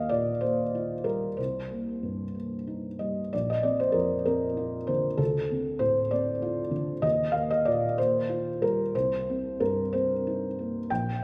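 Neoclassical minimalist piano in a rubato 6/8 at 60-65 BPM, intimate and peaceful, played on a solo felt-muted upright piano tuned to A4 = 439 Hz that sits up front with a thick-felt, dark, mellow tone and audible action noise across a range from Bb1 to G5. Over about 11.2 seconds, cut from a longer piece, it moves through soft chords such as Ebadd9, Cm7, Bbadd9 and Dm7, the phrase beginning again at 3.3 seconds. A wet recital-hall reverb of 1.7 seconds lends the vintage instrument a church-like space.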